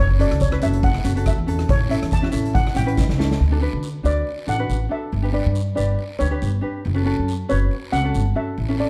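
A shimmering double-seconds steel pan, struck with medium rubber sticks, opens this bouncy, sunny calypso excerpt in D major at 140 BPM with a light 16th-note swing, featured over woody pizzicato upright bass sitting up front. Bright fingerpicked ukulele, a raspy close guiro and an airy, polished street-band drum kit with a boomy kick and medium-tuned snare join almost at once. The drums close their part with a fill from 3.0 to 3.4 seconds as the harmony moves from F#m7 and A7 into D, G and F#m, all in a dark production with light reverb.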